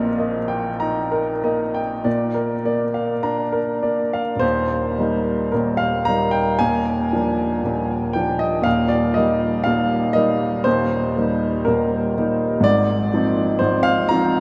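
Nostalgic and serene, this romantic nocturne for solo piano drifts along with a free, rubato feel, cut from a longer piece. A clear baby grand carries everything alone from 0.0 to 14.4 seconds, reaching from deep in the bass up into the upper middle of the keyboard. Its tone is natural and intimate, placed up front, with long sustain and the mechanical noise of the action plainly audible. A huge, wet reverb surrounds the instrument, suggesting a vast, echoing space with a tail of about 7.7 seconds. After a brief opening passage, a new section begins at 4.4 seconds, moving through gentle tonic and dominant harmonies before settling on a minor-seventh colour near 12.6 seconds.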